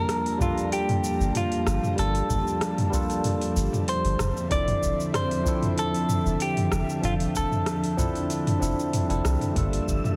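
A dark, clean semi-hollow electric guitar sits up front and carries the melody in this wistful sunset chillout piece, colored by delay and shimmer reverb until it drops out at 9.2 s. A clean tine electric piano plays accompaniment through a combo amp with digital delay and its own shimmer reverb, while a soft, breathy pad with chorus holds sustained chords in the background. A deep house drum kit of cabasa, metallic hats, rim click and toms comes through overdriven and layered, with a deep analog electronic kick tucked behind it and a gentle swing in the groove. A round sine sub bass enters at 1.2 s, and a faint wind-like tuned noise texture appears only at 9.7 s. The harmony moves from Gm9 to Dm9/F and back, all within a lush hall reverb and a heavily compressed, radio-like sound, in a short section cut from a longer piece.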